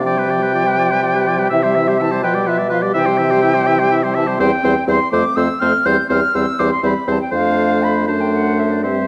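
Quick, lively and graceful classical-period wind quintet music in 6/8 with rubato, where an airy concert flute carries the expressive melody with vibrato high above a clear, close oboe second line, smooth-topped clarinet and mellow French horn accompaniment, and an up-front bassoon bass, all set in a wet recital-hall reverb with a dark, warm production.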